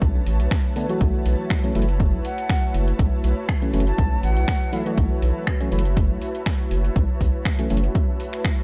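A punchy, overdriven electronic kick and a round, dark analog bass open this moody deep house excerpt at 121 BPM, with a swung 16th feel over an F#m7 chord, alongside an overdriven kit of finger snaps and metallic hats. Two pumping, chorused pads sit beneath: one soft and breathy holding sustained chords, the other ethereal and detuned, bathed in its own reverb. A hollow, percussive organ stab enters at 0.8 seconds, colored by cassette tape, delay and pumping, while a distant concert flute with expressive vibrato and digital delay plays the melody from 2.2 to 4.9 seconds.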